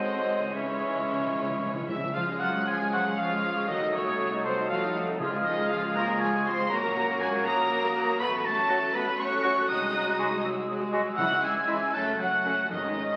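A full symphony orchestra opens at once in an urgent, restless romantic movement in Db major, with a clear, distant violin section singing the vibrato-rich melody over a 6/8 lilt at 79 BPM in dotted quarters, pushed and pulled with rubato. A warm solo oboe, airy flutes, a bright clarinet and a second, focused violin section weave supporting lines, while bright violas, a vintage-toned bassoon, dark soft-edged French horns holding chords, a ringing thumb-plucked harp in arpeggios, and smooth cellos over lush double basses fill out the accompaniment. Close, dry timpani come in at 0.5 seconds with a fill, return briefly around 5.2 seconds and again near the end, as the whole orchestra sits in a stone-room reverb and the crackle of a very old 78 rpm record.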